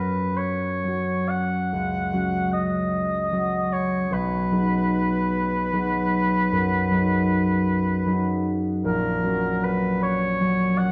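At a slow, rubato 50 BPM in 12/8, this serene, lyrical romantic classical excerpt in F# major pairs a warm, lightly vibrato oboe singing the melody between A#4 and F#5 with a bright, thumb-plucked concert harp ringing out its accompaniment from A#1 to G#4, both up front on a dark, roomy scoring stage, as the harmony moves from F#5 to B6 and settles on F#/A# at 8.9 seconds.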